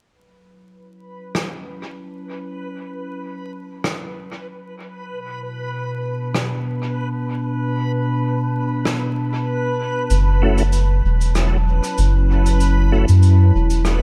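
Meditative and spacious, this ambient dub excerpt at 96 BPM in F# minor opens with a warbling, nostalgic pad fading in on sustained chords with chorus and reverb, joined by a reversed, dreamy swelling texture and a rim click and cabasa with dub echo and a rolled-off top, before a deep, round sub bass enters up front at 10.1 seconds and a smooth tonewheel organ adds stabs through a fast rotary speaker from 10.4 to 13.1 seconds, all set in an echo-heavy small room with vinyl crackle.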